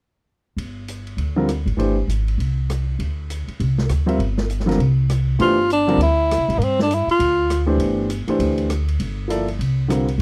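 Upright bass and a swinging big-band drum kit open this cool, hypnotic modal jazz fragment at 0.6 s, the bass woody and thumpy with gut-string pizzicato up front over a Gsus4 harmony. The drums sit lower in the mix, a natural, acoustic kit of hi-hat, ride cymbal, rim click and medium-tuned snare heard in a big room. A clear concert grand piano offers a brief touch before returning at 4.1 s to accompany in a present, polished, intimate voice, its deep bass and audible action noise close at hand. At 5.4 s a breathy tenor saxophone steps forward with a soft attack, vibrato and scooped notes, carrying a short solo melody. The whole thing has the dry, close feel of a 1970s studio session, with little reverb.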